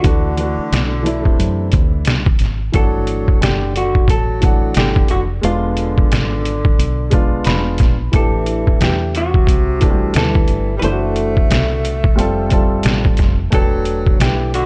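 Jazz-hop at 89 BPM in G major, relaxed and warm, with an up-front, gritty sampler-style drum kit carrying a thumpy kick and vintage 12-bit crunch under a round, foam-muted dub bass, a dark, mellow grand piano that adds a fill at 7.1 seconds, a clean hollow-body jazz guitar melody touched with slapback echo, and a breathy, distant tenor saxophone second line with scooped notes, all moving through chords like Gsus2, E7b9 and Em9 in a dark production.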